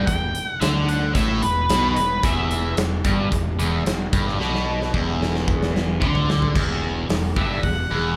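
Heavy, brooding blues rock with a southern rock edge opens at 111 BPM in E minor on a dark octave-fuzz lead guitar melody, a double-tracked overdriven electric guitar riff with phaser, and a growly fuzz fingered electric bass, joined at 0.1 seconds by a punchy, up-front big rock drum kit that plays a fill from 4.4 to 6.6 seconds before the lead returns at 7.4 seconds, all captured as a power trio playing live in one large studio room with moderate reverb.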